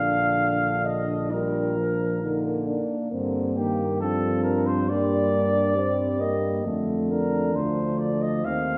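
Classical, hymn-like brass band music in Bb major, serene and tender, unfolding at a rubato 67 BPM in 4/4 over Bb, Gm and Dm/F in an 8.8-second passage cut from a longer piece. A mellow flugelhorn sings the melody up front with light vibrato and a soft attack, over a dark French horn section in the background, a warm euphonium with gentle vibrato and a close-miked trombone, while the tuba, also up front with a gentle onset, anchors the bass. The band is heard from further back in a wet recital hall with a 1.8-second reverb, lending the flugelhorn, horns and euphonium a distant, roomy quality.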